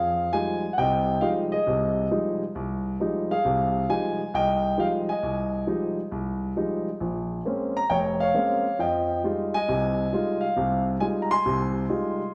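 Moody and late-night, this short excerpt of solo jazz unfolds at a swing feel, cut from a longer piece. A single concert grand piano carries everything from 0.0 to 12.3 seconds, ranging from deep bass notes up into its upper register. Its tone is warm and open, with long sustain and a close, up-front presence. The harmony rests on a minor ninth chord, shifts to another minor ninth at 7.0 seconds, then returns to the first at 8.8 seconds. A wet recital hall reverb surrounds the instrument, lending the sound the resonant air of a church or concert hall.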